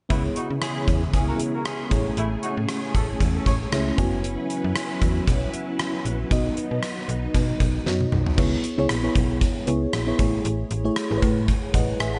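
Uplifting and nostalgic, this 1980s-style pop excerpt at 116 BPM in 4/4 with a light sixteenth-note swing opens with mellow, distant horn stabs carrying tape echo until 3.6 seconds and lush sawtooth string-machine chords with ensemble chorus until 8.4 seconds, over a dreamy, chorused FM electric piano with a soft pad layer, a snappy, metallic slap-like FM bass and a punchy, up-front gated drum kit with a fat snare, moving through C#m7, Amaj7, F#7sus4 and B, with a short electric piano fill and a drum fill at 7.9 seconds before the chords return to C#m7 in a small, lightly reverberant room.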